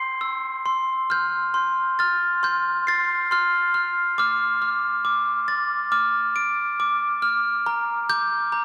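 A dreamy, reverb-soaked sound cradles this gentle, innocent children's lullaby in F major at a rubato 69 BPM, where a lone glockenspiel played with soft plastic mallets rings up front with a mellow, bell-like tone through analog delay, moving over C, F, Dm and Bb across a short fragment cut from a longer piece that runs to 8.6 seconds.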